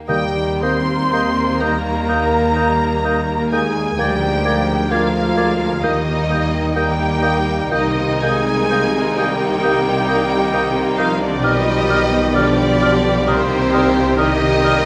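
This excerpt has a lush, reverberant scoring-stage sound, a slow romantic orchestral movement that feels serene and tender, its beats stretching and easing in a rubato pulse. A violin section carries the melody with smooth vibrato, while a second violin section, close and in the background, adds a supporting line beneath it. Flute, clear oboe, mellow clarinet and bassoon weave quiet second lines and accompaniment, and a mellow French horn section holds sustained chords. Viola, cello and double bass sections give a rich bowed foundation, and a very quiet concert harp rings out fingerpicked arpeggios throughout. Timpani with medium mallets sound only at the start, stopping by 1.6 seconds, as the harmony moves from Eb through Bb7/D back to Eb, then on to Cm7 and G7/B before returning to Cm7.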